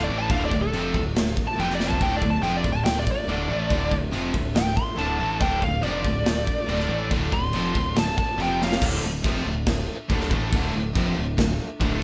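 A bluesy overdriven lead guitar leads this aggressive, driving hard rock excerpt, its dark, distorted solo sitting up front until it stops at 8.8 seconds. Beneath it, three picked rhythm guitars play the riff in the background: a biting, double-tracked overdriven part, a scooped high-gain one, and a tight distorted one with a bright edge. A growling picked electric bass, overdriven yet round, anchors the low end, while a very quiet, moody analog pad holds detuned, chorused chords deep in the mix. The gated 80s drum kit sits up front with a punchy kick, medium-tuned snare, toms and crash cymbals, with fills at 1.8 and 8.6 seconds, its gated stone-room sound adding punch. The whole band sounds as if it were playing live in one room with moderate studio reverb, moving between D minor and F power chords.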